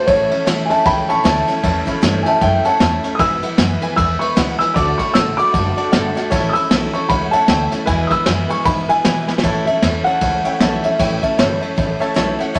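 An upbeat, rollicking rockabilly excerpt in A major at 154 BPM, swung on the eighths, where a dark, mellow upright piano with audible action noise and long sustain carries the melody as a solo until 9.4 seconds. Beneath it, a bright, full-bodied picked dreadnought guitar, a detuned, jangly honky-tonk upright piano and a thumpy, gut-strung pizzicato upright bass fill out the accompaniment. An up-front vintage brush kit with a punchy kick, high-tuned snare and dark cymbals plays a fill at 9.2 seconds, all set in a wet studio reverb.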